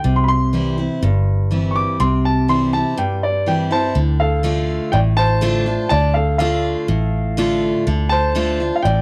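A straight 4/4 pulse at 123 BPM drives this brooding, dusty stretch of honky-tonk and classic country in D minor, tuned to A4 = 435 Hz and cut from a longer piece. A woody upright piano with long sustain carries the melody and takes a solo from 0.0 to 4.0 seconds over a C chord, moving to D minor at 4.0 seconds. A bright, full-bodied jumbo steel-string acoustic guitar picks the accompaniment, while a dark, round, foam-muted vintage electric bass sits up front in a dry, close 1970s-style studio sound.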